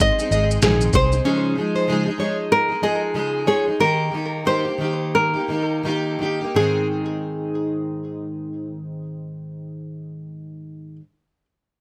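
A light reverb gives this short acoustic pop excerpt an airy, sunny sheen, and its mood is carefree from the start. In Ab major and 4/4 with a gentle swing on the sixteenths, it moves between 82 and 96 BPM, slowing down from 1.2 to 6.6 seconds as the chords pass from Ab through Dbadd9 and Eb back to Ab. A bright nylon-string guitar carries the melody throughout, its fresh strings and finger squeak touched with delay, while a double-tracked, fingerpicked plugged-in steel-string acoustic guitar sits up front with a concert-hall fullness as accompaniment. For the first 1.2 seconds a dark, foam-muted electric bass with a round, amped tone joins a dusty, compressed sampler-style drum kit of gritty thumpy kick, fat snare and shaker, tape-warm and re-recorded in a large room. A second, mellow classical nylon-string guitar adds fingerpicked arpeggios up front from 0.3 to 3.7 seconds before the two guitars carry the rest alone.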